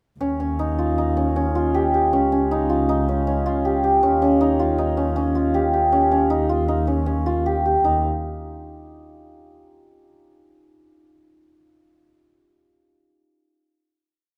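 In a brisk 5/4 at 157 BPM with a straight feel, this short, complete contemporary chamber piece moves with a hopeful, playful lilt in Eb mixolydian. A hammered dulcimer sits up front, spinning a shimmering, ringing ostinato of arpeggios from 0.2 to 8.0 seconds, its struck strings sounding acoustic and warm with resonance. Beneath it, a single muted double bass, bowed con sordino, holds sustained low notes with a dark, veiled tone, soft attack and gentle vibrato, also close and up front. The harmony shifts from Eb7 to Db and back to Eb7 before the parts stop, leaving a final note that hangs until about 9.8 seconds. Close, detailed microphones and light reverb give the small ensemble an intimate, clear presence.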